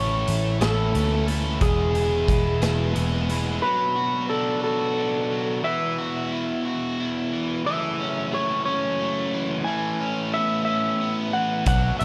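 This indie rock excerpt in A major moves at a slow 60 BPM in a straight 6/8, with a jangly, wistful mood. An electric guitar through a small old amp carries the melody, its slightly broken-up, lo-fi, fingered tone lifted by spring reverb and slapback echo. Beneath it, a biting overdriven guitar with a warm edge and a bright, compressed fuzz guitar with subtle chorus and slapback echo play riffs across the whole 12 seconds. A dark, round picked bass sits up front, and a gritty, saturated raw garage drum kit adds a punchy kick, a medium-tuned snare and hi-hat in a pumping stone room. The bass and drums drop out by 3.6 seconds as the harmony moves from A and E into Bm7, Esus2, F#m7 and Aadd9, then return at 11.7 seconds.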